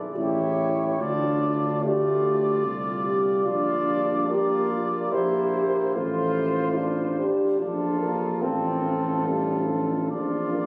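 Stately and noble, this brief classical brass quintet passage moves at 73 BPM in 3/4, with a dark, soft-attacked French horn opening at 0.0 s before a mellow cornet with vibrato sings the melody from 0.2 s over a gentle trumpet second line in the background, a clear, roomy trombone and an up-front tuba bass, the harmony turning from D minor to F major at 3.5 s, set in a deep cathedral reverb and captured on a phone in the room.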